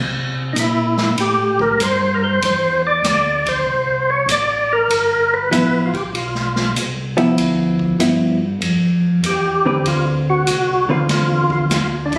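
Captured on a phone in the room, this short cut from a longer soul jazz organ trio piece carries a club's reverb around a soulful, bluesy groove in G mixolydian. At 97 BPM in 4/4 with a swung eighth-note feel, a mellow, round tonewheel organ holds the bass line, its dark, clean tone turning through a slow rotary speaker with a touch of key click. A second tonewheel organ takes the melody up front, lightly overdriven and percussive with a full, third-harmonic bite, its chorus vibrato and slow rotary adding shimmer. A big-band drum kit swings from a distance on hi-hat, ride, snare and a boomy kick, its dusky cymbals and roomy sound sitting behind the organs. From 5.5 s to 11.7 s a vintage hollow-body electric guitar joins with compressed, picked accompaniment, close and clean, while the harmony moves from C13 to G13 to D13.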